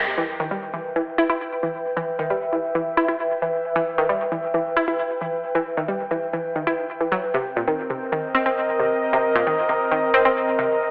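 A straight 4/4 pulse at 134 BPM drives this hypnotic, industrial techno excerpt in E harmonic minor, tuned to A4 = 443 Hz. A warbling, nostalgic tape-like pad with a slow attack and long release sits up front beside a bright, detuned analog pluck riff, whose ring-modulated sawtooth and square tones carry a filter sweep, tube saturation, chorus and dub echo, while a very quiet electronic sub drop marks an impact at 0.1 s. The harmony shifts from Em to Cm at 7.2 s, and the recording has a telephone-like sound in a wet stone room reverb with digital ambience.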